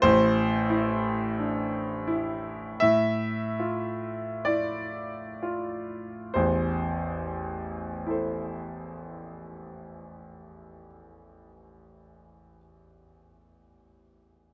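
Romantic classical nocturne for solo grand piano in A minor, melancholic and mournful, moving at a very slow 29-45 BPM in 4/4 with a rubato feel that slows down through the first 6.4 seconds. The piano sounds clear and present, sitting up front in a light reverb, and ranges from A1 to E5 as the harmony moves from A minor to D minor add9 over A and back to A minor when a new section begins at 6.4 seconds. This short excerpt is cut from a longer piece and ends at 14.5 seconds.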